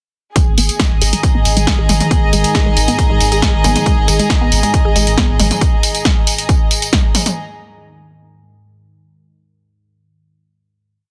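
Driving peak-time techno at 137 BPM in G# minor with a hypnotic pull, built on a heavy layered four-on-the-floor kick and a punchy, tape-tinged analog drum machine of hats, snare backbeat, tambourine and toms, while a thick saturated sub bass rumbles between the kicks until 5.5 seconds, a squelchy resonant blip pluck loops a 7-step sequence against the bar under a filter sweep with dub echo, a dark detuned ambient pad drones in the background from 1.2 seconds, and a soft sul tasto string section floats slowly shifting chords through to 7.4 seconds, with the bass, pluck, pad and strings all pumping against the kick in a dense, heavily limited master.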